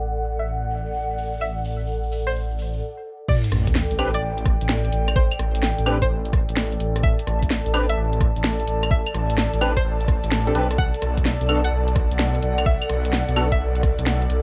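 Moody and soulful, this excerpt of swung two-step UK garage at 128 BPM in A dorian opens with a deep, rumbling detuned saw bass, an airy, breathy pad with chorus and cassette-tape colour, and a grainy tube shaker, joined at 0.4 s by a twangy, string-like resonator pluck through analog delay; the shaker drops out at 2.8 s under a filter sweep. At 3.3 s an overdriven, knocking kick, a garage kit with a cracking snare and low-passed hats, and an electronic sub drop arrive for the drop, joined at 4.0 s by hollow, percussive organ stabs through tape echo as the harmony moves from Am11 to Bm7, the mix carrying light reverb and a lo-fi home-cassette haze.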